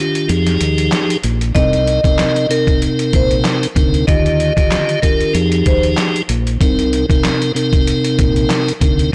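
A tonewheel organ with key click and a slow rotary speaker opens this dark, reflective boom-bap hip-hop excerpt in C minor at 95 BPM with a light 16th-note swing, soon joined by gritty, pitched-down sampler-style drums with a thumpy kick, handclaps and hi-hat, and a round, punchy fingered bass with tube saturation, while a bright, ringing hard-mallet vibraphone with digital delay carries the melody from 1.5 to 5.8 seconds over Fm9, Cm7 and Ebmaj9 chords in a dry, blown-out, overdriven mix.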